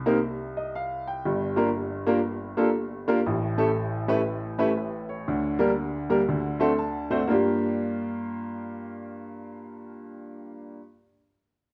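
Dark, reverberant studio sound surrounds a woody, natural upright piano with long sustain, placed up front as the lone accompaniment in this soulful, fervent gospel passage cut from a longer piece. At 119 BPM in 4/4 with a swung eighth-note feel in G minor, the piano moves through Cm7, Gm7, A7 and Gm/D. A fill from 6.3 s over D7 leads into a new section at 7.3 s that settles on Gm7 before the piano stops at 10.8 s.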